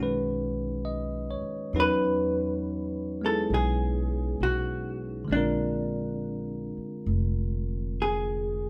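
A jazz ballad at a slow 67 BPM in 4/4 with a gentle swing on the eighth notes, this short excerpt cut from a longer piece feels wistful and intimate. A bright, barky tine electric piano carries the accompaniment from the start with clean, bell-like chords, while an upright bass plays pizzicato underneath, its woody, steel-strung tone sitting up front. At 1.8 seconds a vintage hollow-body jazz guitar enters with the melody, its dark, picked, compressed sound staying in a narrow middle register. The harmony moves from Badd9 to E69 and then A#9. All three instruments sound close and up front, set in a moderate large-studio reverb that adds a soft sense of space.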